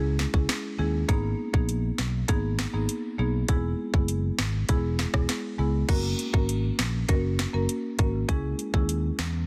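Woody marimba and a punchy, amped fingered electric bass open this bouncy, tough dancehall piece together. The island pop drum kit arrives at 0.2 seconds, sitting up front with a tight kick, a sharp snare, metallic hi-hats, rim clicks and crash cymbal, all coloured by a vintage 12-bit sampler grit and a tape-warm tone. The harmony moves from C#m through G#madd9 and E, then shifts to F# when a new section begins at 5.9 seconds before returning to C#m. The marimba, struck with medium mallets on padauk bars, carries the accompaniment in its middle register while the bass holds the low end, both placed close in the mix. A digital ambience surrounds the parts, and the dense, heavily limited modern master gives this short cut from a longer piece a compact punch.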